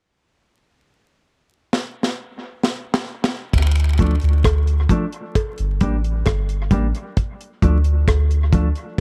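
Over vinyl crackle in an echo-heavy studio mix, this meditative, hypnotic slice of roots reggae in D minor at 66 BPM, cut from a longer piece, opens with a dry, up-front drum fill at 1.7 s built from tight kick, high-tuned snare, rim click, hi-hat and dark crash cymbal in dub echo; at 3.5 s a deep, round sub bass arrives on Dm alongside a close jawbone-type rattle and cowbell, and at 4.0 s a clean, compressed, fingered electric guitar washed in tape echo joins as accompaniment through the Gm and back to Dm.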